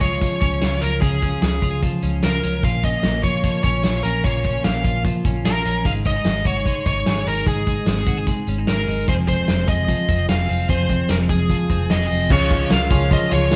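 A smooth, overdriven lead guitar carries the melody up front in this youthful, breezy jangly indie pop excerpt, over bright, twangy arpeggios from a compressed twelve-string electric guitar with harmonic tremolo, a round, foam-muted vintage electric bass and a muffled, lo-fi vintage drum kit with dark cymbals, set in a moderate stone room reverb, until a reedy electric piano with fast tremolo and a very quiet, full-bodied picked steel-string acoustic guitar join at 12.3 s.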